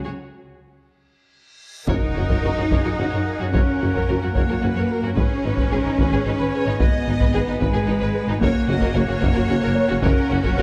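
This cinematic, epic orchestral excerpt in 6/8 opens with lush, bowed symphonic violins, background violas, mellow French horn chords, a focused studio violin melody and close, up-front cellos, before a huge, bright reverse cymbal at 1.6 seconds and an impact at 1.9 seconds bring in distant, roomy woodwind chords, a background tuba, expressive double basses and heavy-stick taiko drums, all set in a moderate scoring-stage reverb with a dark, warm production that sustains a relentless, dramatic mood.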